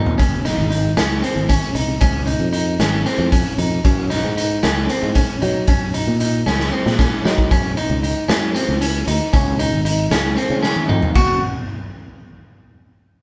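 Bright and intricate, this progressive instrumental excerpt in 7/8 sets a clean, picked electric guitar playing arpeggios over a growly, punchy fretless electric bass and a raw, saturated garage drum kit with a gritty, rolled-off top and a punchy kick, all caught live in one room with moderate reverb, the drums breaking into fills at 0.0, 6.5 and 10.6 seconds before the chords give way at 11.2 seconds.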